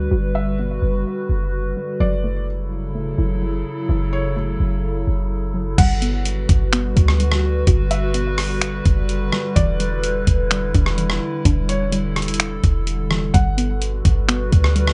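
A close, dry mix with a rounded, dulled top end frames this blissful, floating piece of atmospheric cloud-rap, a section cut from a longer track in G lydian at 127 BPM with a half-time 4/4 feel. A warbly, tape-like pad holds sustained chords throughout, its detuned, nostalgic tone colored by chorus, phaser and its own reverb, softened by a low-pass filter and breathing with sidechain pumping. Beneath it, a clean 808-style bass sits deep and boomy up front with a fast attack and dark decay, while a dusty, detuned pluck with a sub octave and a filter sweep runs arpeggios in the background through chorus and delay. A felt-muted upright piano carries a high, soft melody from 0.3 seconds, intimate and natural with audible action noise, filtered and echoed. At 5.8 seconds a gritty, pitched-down sampler-style drum kit arrives up front, compressed and re-recorded in a small room, bringing a thumpy kick, hi-hat, finger snaps, rim clicks and crash cymbal as the chords move from Gmaj7 through Em7 and back to Gmaj7.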